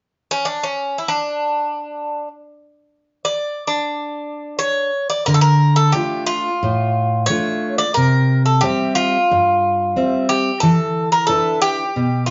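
A straight 4/4 pulse at 89 BPM carries this brief, cool and brooding fragment of Greek folk music, tuned slightly sharp at A4 = 442 Hz. The bouzouki opens alone at 0.3 s, playing the melody up front with a bright, metallic ring from its picked double strings, some of them doubled at the octave. At 5.3 s a picked steel-string acoustic guitar joins in accompaniment, its full-bodied jumbo tone sitting equally forward, with audible finger squeak. Under the guitar the harmony moves from Dm to C and then to a bare E7 chord, which leaves a tense, unresolved edge. The two players sound live together in one room, wrapped in a wet studio reverb, while the top end is rolled off for a rounded, slightly muted sheen.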